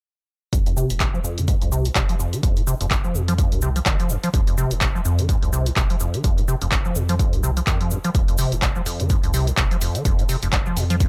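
Trippy and raw, this acid house cut runs at 126 BPM in 4/4 with a 57% swing on the sixteenths, sitting in F minor over an F5 chord from 0.5 to 11.1 seconds. A squelchy, hollow, resonant square-wave acid bass riff sits up front, with a filter sweep running across it, subtle chorus, tape echo and sidechain pumping, while a round, deep analog bass with tube saturation and the same pumping stays dark in the background. A punchy electronic kick drum and an analog drum machine with handclaps and hi-hat, both re-recorded in a small room, drive the groove, and a grainy, bright tube shaker sits close and dry, all in a mix with little reverb.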